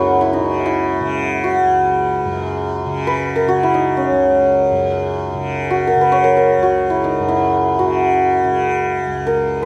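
In free time, this fragment of a Hindustani classical performance in raga bageshri on C# unfolds a longing, solemn mood, with an up-front hammered santur carrying the melody from A#3 to C#5, its ringing, shimmering tone trailed by a slapback echo. Beneath it, a bright, buzzing tanpura sustains a softly plucked drone between C#2 and C#3, sitting well back in the balance throughout the 9.7 seconds. Close, detailed microphones capture both instruments within a moderate recital-hall reverb, tuned to A4 = 441 Hz.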